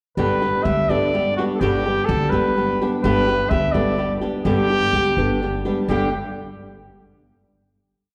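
A clear, distant classical-style trumpet leads this short, proud and festive mariachi piece in 6/8, stating a motif-based melody in sentence-like phrases from 0.2 to 6.1 seconds. Up front beside it, a fresh-stringed flamenco guitar fingerpicks and strums open chord shapes, while a woody, thumpy pizzicato upright bass sits a little lower in the mix, playing root and fifth on the main beats. The complete piece blooms in the wet reverb of a church or concert hall, closing on a final chord that rings from 5.9 seconds.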